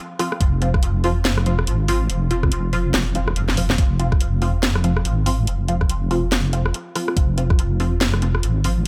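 A filtered dub chord stab and a garage drum kit open this brooding, cavernous deep dubstep excerpt at 0.2 s, moving at 142 BPM in 4/4 with a half-time feel, 60% swing on the 16ths, and a key of F minor. The stabs are muted and detuned, built from sawtooth and pulse waves with a filter pluck, fast attack and short decay. They sit quietest in the mix, colored by phaser, ensemble chorus, cassette tape and dub echo. The layered garage kit is up front, with hi-hat, rim click and a cracking snare, plus a brief drum fill. At 0.4 s a soft wobble bass arrives with an electronic kick drum: the bass is a dark, compressed blend of sawtooth and sine with chorus, and the knocking kick carries a tape-warm tone until it stops at 7.6 s. The overall sound is dry, with little reverb.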